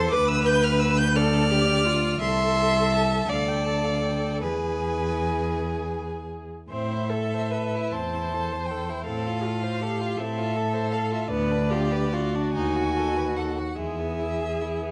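Heard through close, detailed microphones in a recital hall with a moderate 1.5-second reverb, this excerpt of a slow romantic movement for string quartet feels yearning and melancholic. It sits in A minor in 6/8, around 46-58 beats per minute counted in dotted quarters, with the tempo bending freely in rubato. The first violin carries the melody high in its register, its rich, focused tone crowned by a smooth top and shaded with vibrato, while the second violin plays a clear, even second line close at hand. The viola supplies the accompaniment from a more distant position, also with vibrato, and the cello sits up front in the bass, expressive and warm, with vibrato and portamento. The harmony passes through diminished and minor colors toward an E chord, and after a new passage begins at 6.7 seconds it gathers again on E at 13.8 seconds before the music is cut off.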